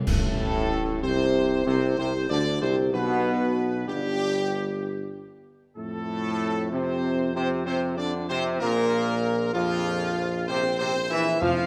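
A warm, vintage-toned tuba anchors this regal classical fanfare at a stately 64 BPM in 3/4, under a distant, roomy trumpet section carrying the melody, a clear, present trombone section and a mellow, smooth-topped French horn section holding sustained chords, all the brass with light vibrato. Bright, close clash cymbals and concert bass drum mark the opening band accent before falling away at 1.9 seconds, while timpani on calf heads sound in the background at the start and again at 11.4 seconds. The majestic harmony moves through Amadd11, G, F and Bb5, and the brass is bathed in a lush scoring-stage reverb in this short extract from a longer piece.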